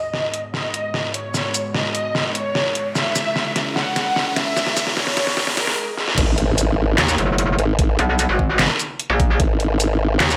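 A heavy, aggressive wobble dubstep cut from a longer piece, set in a moderate digital room ambience at 149 BPM with a half-time 4/4 feel and tuned to A4 = 443 Hz. It opens on a build-up where a dark, woody studio violin section carries the melody through a low-pass filter and dub echo, with vibrato in its close, bowed ensemble tone, over a lush, thick, detuned unison pad that warbles with chorus and sidechain pumping as the chords move from G#m7 to C#m. Filter sweeps run across the violins and pad through this opening, while the dubstep kit plays a fill with crash, handclaps, hi-hat, shaker and a deep snare re-recorded in a large room, and an electronic riser and swell sit in the background. At 6.2 seconds the drop lands with an impact, the harmony falls away and an overdriven electronic kick knocks in beside a saturated, up-front formant-sweep wobble bass holding G#1. From 7.0 seconds a second bass joins, a bright, metallic FM wobble with distortion and chorus, and the two wobbling basses carry the heavy low end through the drop.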